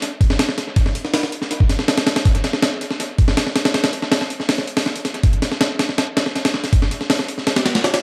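A straight 4/4 breakbeat drives this drum and bass passage at 161 BPM, its sampler-style kit of hi-hat, thumpy kick and high-tuned snare sitting up front with a gritty, compressed bite for the full 8.0 seconds. Tape echo trails the drums, and a moderate spring reverb with digital ambience gives the echo-heavy mix a dark, nostalgic haze. It is a short cut from a longer piece.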